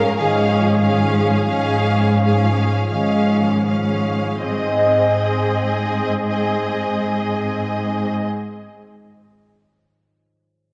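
Tender and warm, this slow romantic classical movement for symphony orchestra in Ab major drifts at 38-48 BPM with rubato, easing from 0.0 to 4.4 seconds as a Db/Ab chord settles onto Ab: a rich, close violin section carries the bowed vibrato melody over a lush, soft-attacked second violin line and focused viola accompaniment, while an up-front, smooth cello section holds the bass and a ringing fingerpicked concert harp arpeggiates in the background until 8.5 seconds, all bathed in moderate scoring stage reverb and the worn, warbling pitch drift of old cassette tape.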